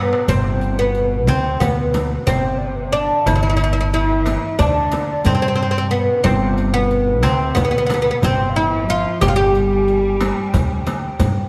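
Turkish makam ensemble music in 9/8, this festive, warm-hearted excerpt is cut from a longer piece and opens on a drum fill at 0.0 seconds. A bright, woody oud carries the melody up front, its plectrum-plucked double strings ringing with a fretless, acoustic character. Behind it, a pure, hollow baroque flute with a straight tone and rolled-off highs sits in the background alongside an earthy bowed cello section with light vibrato and a smooth top, the two forming second lines. A dark, thumpy upright bass on gut strings anchors the ensemble from the front of the mix. The percussion stays in the background: a crisp metal-shell darbuka played with hard hands sounds distant, as if in a large room, joined by a deep, large frame drum and a riq whose dark jingles are close and dry. A moderate concert hall reverb surrounds the group, and lossy compression artefacts are audible.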